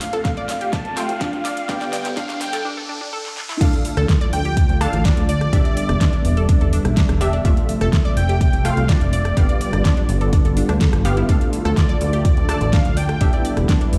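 Heard through a big sound system in a bare stone room with light digital ambience, this dreamy, expansive progressive house excerpt at 125 BPM in D dorian builds for 3.6 seconds with filter sweeps, drum fills and a background riser before dropping, carried throughout by a punchy up-front kick, a pop kit with a fat snare and metallic hats, a funky wave-folded analog bass, round chorused pluck arpeggios, nasal unison pluck stabs through cassette tape and tape echo, a smooth detuned pad holding chords, and a thick, bold unison lead melody with vibrato, the synths and bass pumping to the sidechain.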